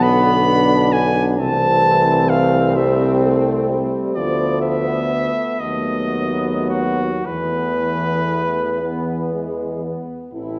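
Melancholic and yearning, this hymn-like classical fragment for brass band moves in a flexible, rubato 6/8, with a mellow cornet singing the melody up front with light vibrato over a soft-edged French horn section on the second line. A distant, roomy euphonium with vibrato and a tight trombone section fill in the accompaniment in the background, while a clear, present tuba anchors the bass, and all five parts sound together throughout in a reverberant recital hall. The harmony drifts through shadowed chords to a suspended E chord at 7.3 s before resolving to E at 8.8 s.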